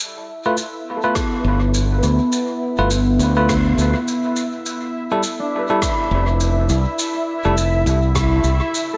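Ambient dub at 103 BPM in G mixolydian, peaceful and hazy, where a bubbling stepped-filter texture with chorus opens at 0.0 seconds, bell-like tine electric piano stabs with dub echo enter at 0.5 seconds, and shaker and rim click, a detuned warbling analog pad, filter-swept thumb-plucked Celtic harp arpeggios with tape echo, an overdriven deep electronic kick and an up-front bright fingered electric bass follow, all moving from Gadd9 to Fmaj7(no3) under moderate spring reverb in this cut from a longer piece.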